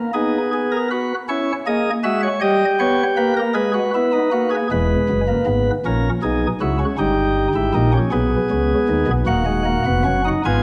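A chamber organ opens alone with light, sparkling flute stops, their bright chiff sitting up front as the four voices of this baroque-style fugue unfold in a straight 6/8 across a range from deep pedal tones to high treble. The mood is serious and contemplative, with a first passage giving way at 4.7 seconds to a second that moves through darker diminished colour before settling back toward the home minor chord. A wet recital-hall reverb surrounds the organ, and the passage is cut from a longer piece, ending at 10.6 seconds.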